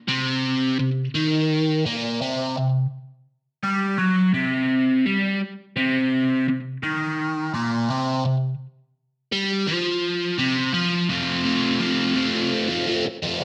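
A moderate studio reverb gives this short rock excerpt some air, with a biting, overdriven electric guitar placed up front, double-tracked and colored by a phaser and a slapback echo. At a driving, sunny 84 BPM in straight 4/4, the picked guitar plays alone, ranging from F2 to F4 over a C5 power chord. At 11.1 seconds it moves to F, continuing until 13.4 seconds.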